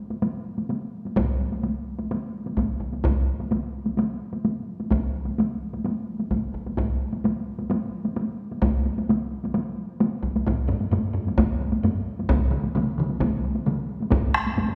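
Heavy-stick taiko drums open this driving, powerful excerpt of Japanese traditional ensemble drumming in straight 4/4, joined at 1.2 seconds by a second close, dry taiko part struck with hard sticks, then a third hard-stick taiko part with a small-room sound enters at 10.7 seconds and a fourth at 12.5 seconds as the pulse keeps speeding up, all set up front within the reverberant air of a concert hall.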